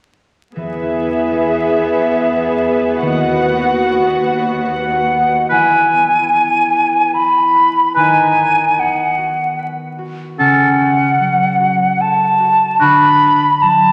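Veiled, con sordino violas open this moving, longing cinematic film cue in a rubato 3/4, joined almost at once by dark muted violins, soft-attack cellos and a ringing fingerpicked harp. A hollow, up-front flute enters at 4.7 s, the strings fall away at 5.3 s, and a clear solo oboe and a distant, roomy clarinet join at 5.5 s to share the second lines with the flute over the harp, which rings on with the flute to 13.9 s, beneath a wet scoring-stage reverb and a layer of vinyl crackle.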